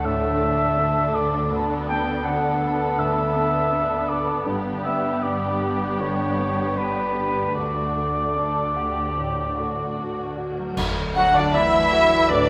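A tender, moving orchestral film-score passage opens on muted violins carrying the melody in a free, rubato flow, with a mellow, distant cor anglais standing up front on a second line while another veiled violin section adds a further second line from the background. Beneath them, con sordino violas and a warm grand piano with short sustain fill out the accompaniment, a very quiet thumb-plucked concert harp rings with arpeggios, and dark-toned muted cellos and lush double basses anchor the bass. At 7.6 seconds dark cymbals, a cymbal swell and concert bass drum join in, and soft-mallet timpani with a round calf-head tone mark an accent at 10.8 seconds. A tight, mellow French horn section enters at 12.3 seconds with a sustained chord just as the fragment is cut off. The whole ensemble sits in a roomy, reverberant scoring-stage ambience that gives the bowed strings a soft, vibrato-laden glow.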